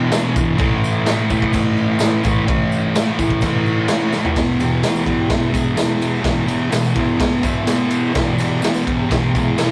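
A rough rehearsal-room recording with tube saturation and a wet small room reverb gives this short cut from a longer garage rock piece a raw, swaggering character, moving at 127 BPM in a straight 4/4 in E mixolydian. A thick fuzz guitar, double-tracked and up front, drives a picked riff between E2 and A3, moving from E5 to A5 chords early on before settling onto E at 4.4 seconds. The raw garage drum kit sits up front too, with a boomy kick, a medium-tuned snare, dark cymbals and a gritty, saturated edge, its pumping room sound and rolled-off top adding weight; a drum fill at 4.1 seconds leads into the second section. A jingly tambourine, close and dry, rides in the background throughout. At 4.6 seconds a vintage combo organ enters with a reedy, clean melody drenched in heavy vibrato, spanning G#3 to F#5 and sitting behind the guitar and drums.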